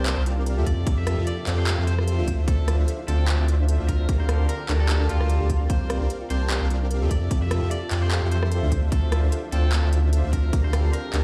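Future bass with an emotional, dreamy mood, moving in a half-time feel with a light swing on the sixteenths, cut from a longer piece. A thick, saturated sine sub bass sits up front and pumps against the sidechain, while a smooth, detuned supersaw with a moving notch, a touch of vintage 12-bit sampler grit and its own sidechain pumping plays a riff over lush extended chords such as Dm9 and Gm9/D. A bright, twangy electric guitar at the edge of break-up plays the melody through a digital delay and also pumps with the sidechain, backed by a very quiet, ethereal pad with an octave-up shimmer and a gentle, tine-like pluck playing arpeggios. The trap kit brings crisp hats, handclaps and rim clicks, and a hard-clipped electronic kick enters at 0.7 seconds and stops at 10.6 seconds, both drum parts carrying studio reverb. The whole mix sounds as if played on a big sound system in a bare stone room, adding a light reverb.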